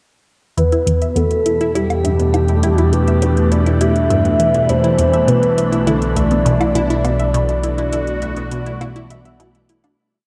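Drenched in a lush hall reverb with a 2.7-second tail and a cassette-tape softness, this hypnotic, mysterious piece of ambient, sequencer-driven space music in E minor at 102 BPM moves from Em to Bm7 as a swirling phased analog pad sits up front beneath a round, dark octave-layered synth lead with vibrato, while a punchy unison pluck and a squelchy, ring-modulated blip pluck repeat 7-step loops drifting against the bar, a fat analog bass holds the roots, a dry, metallic electronic hi-hat and woodblock tick lightly, and an airy, wind-like tuned noise texture enters at 2.2 s before the piece fades out from 6.9 s.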